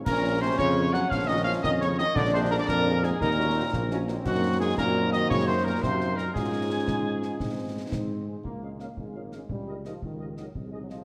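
A lilting compound metre drives this proud, spirited military-style march for wind band, cut from a longer piece. A solo cornet carries the melody up front, its tone warm yet distant and roomy, while a very quiet, mellow woodwind section adds a second line in the same register. A pure, tongued piccolo with expressive vibrato soars high above, and a euphonium with light vibrato adds a second line from the background in the low register; both drop out at 7.9 s. A soft-attack trombone section holds sustained chords, a French horn section fills in the accompaniment, and a mellow, roomy tuba anchors the bass. The concert snare, clash cymbals and bass drum sound close and dry, the cymbals dark in colour, while a wet scoring stage reverb surrounds the band as the harmony moves from minor chords toward a brighter major turn when a new section arrives at 8.4 s.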